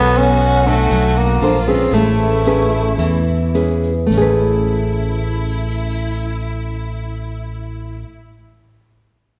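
Sophisticated and breezy, this bossa nova fragment from a longer piece opens with a growling tenor saxophone playing a breathy, raspy subtone melody with scooped notes and vibrato up front until 3.5 s, while the music slows over its first 4.1 seconds through Bm9, Bbmaj9 and Amaj9. A thumb-plucked classical nylon-string guitar and a direct, amped fingered electric bass carry the accompaniment, with a lush, distant symphonic violin section bowing a smooth second line behind them. A grainy, saturated tube shaker adds percussion until 4.2 s, and the whole sits in the wet reverb of a recital hall.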